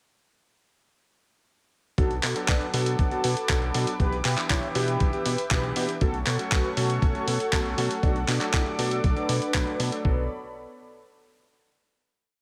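Nostalgic and bittersweet, this short italo disco piece moves at 119 BPM in B minor over a straight 4/4 pulse. At 2.0 seconds the full band arrives together: a gritty, thumpy electronic kick hammers out four-on-the-floor, while an up-front, sampler-style soul kit adds handclaps and closed and open hi-hats in a disco machine beat. A glossy, pulse-wave synth bass with a plucky filter and chorus jumps between octaves, and a smooth, detuned analog pad holds slow-blooming sustained chords. Above them, a round, brassy synth lead with a filter sweep, chorus and digital delay repeats a dark riff melody in thirds and sixths, and a clangy vintage electric grand piano sits in the background with delayed, dotted-rhythm chord stabs. The harmony circles Bm7, Em7/B, F#m/B and D/B over a held B, and at 10.0 seconds it returns to Bm7 for a final chord that rings until 12.1 seconds, all in a light reverb.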